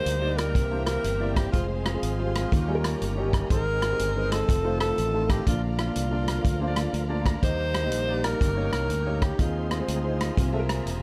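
A swung, uptempo gospel groove from a punchy big-band drum kit with hi-hat, kick and rim click and a round fingered electric bass entering at 0.1 seconds carries a breathy, whispered alto saxophone melody over woody upright piano, a reedy tonewheel organ with key click, fast rotary speaker and chorus vibrato, and lush bowed strings in the background, with a piano fill at 10.6 seconds closing this soulful, uplifting excerpt cut from a longer piece.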